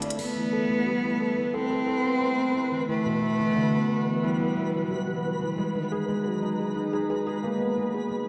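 A melancholic, cerebral IDM fragment opens with a glassy, warbling FM pad holding sustained chords in the background, a felt-muted upright piano playing dark, intimate arpeggios up front with audible action noise, dub echo and a filter sweep, and a twinkling granular texture adding octave-up shimmer. At 0.2 s a rich, nasal cello enters with an earthy, lightly vibrato melody through tape echo, stopping at 5.2 s as the harmony moves from Am9 through Em9 to G#m9. A moderate plate reverb and the stony reverb of a bare room, heard through a big sound system, surround the mix.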